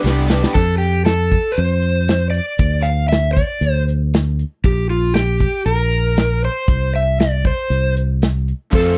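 Folk rock with a heartland rock edge, this jangly, hopeful excerpt moves at 117 BPM in a straight 4/4, opening on a drum fill where a shimmering, octave-doubled twelve-string acoustic guitar, a reedy, breathing harmonium, a bright tambourine and a raw, double-tracked garage guitar with overdrive all sound briefly before an overdriven slide guitar with slapback echo takes the melody at 0.5 seconds. From there the up-front slide carries the tune over a round, fingered electric bass and a natural country drum kit with dark cymbals and a punchy kick, the chords moving from F through chordless stretches and Gm/Bb. The lo-fi garage guitar and the twelve-string return together at 8.7 seconds, all in a dry, close 1970s-style studio sound with little reverb.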